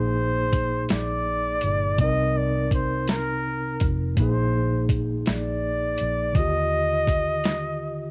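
A dry, intimate home cassette recording frames this tender, sensual slow R&B cut in a 6/8 lilt at 55 BPM, drifting through Bb7sus4, Cm7 and Ebmaj9. A clear, up-front flugelhorn carries the pop-style solo melody with vintage vibrato over a mellow tine electric piano heard through its built-in speakers, while a dark, round, foam-muted fingered electric bass sits underneath. A gritty, compressed sampler-style soul kit with a thumpy kick and medium-tuned snare comes in at 0.5 seconds and drops out at 7.6 seconds.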